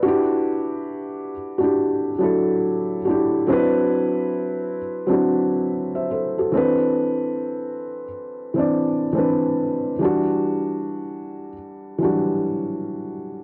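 A felt-muted upright piano opens this short hip hop excerpt and carries it alone from start to finish, its thick felt giving each note a dark, intimate tone that sits up front in the mix. The mood is nostalgic and reflective, with a slow, relaxed pulse in four and a gentle swing on the sixteenth notes. The piano moves through a lush progression of Em9, D13 and Cmaj9 before returning to Em9 at 10.0 seconds, spanning from E3 to E5. Cassette tape colouring and a low-pass filter soften the sound further, lending it a vintage, home-recorded character. A wet small room reverb adds a sense of space around the instrument, and the passage, cut from a longer piece, runs just over 13 seconds.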